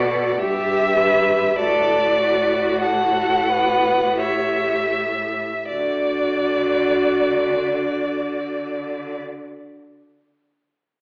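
Heard from further back in a reverberant recital hall with an AM-radio tone, this cut from a slow romantic string quartet movement in D major moves in a rubato 3/4 at 38-54 BPM, lyrical and serene, slowing through its first 5.7 seconds before settling on a D chord. A rich, focused violin carries the melody with vibrato, while a second violin, soft in attack and close up front, sings an expressive line above it with portamento and sits louder than the tune itself. Beneath them a smooth, even viola supplies the accompaniment and a distant cello gives the bass with its own vibrato and portamento, each part bowed by a single player from 0.0 to 9.2 seconds.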